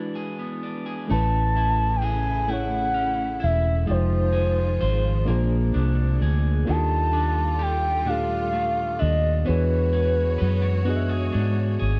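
A round, foam-muted electric bass sits up front in this late-night, sultry R&B excerpt, entering at 1.1 seconds with a lush bowed string section after a brief opening break, in a slow 6/8 at 43 BPM. Over it, a mellow sine-toned lead glides between notes with vibrato and chorus, while a dark, slightly broken-up picked electric guitar with spring reverb adds a second line and a reedy electric piano fills in the harmony, moving from E7 through Amaj7, Fm7 and Bb9 to Ebmaj9#11 and E13. The sound is dry and close, like a 1970s studio recording.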